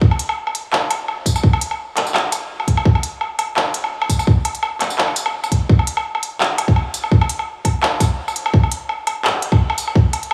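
Drum and bass at 169 BPM in 4/4, this short cut from a longer piece has a heavy, tense mood, with a half-time feel and a light swing on the sixteenths. An electronic kick drum, hard-clipped and up front, drives the whole 10 seconds. An organic electronic drum kit of handclaps, hi-hat, tambourine and woodblock joins at 0.1 seconds, its smooth hats set against an overdriven edge and the character of being re-recorded in a small room. The passage plays as a drop that repeats, with the second pass starting at 5.7 seconds. Light reverb and a studio ambience surround the produced drums.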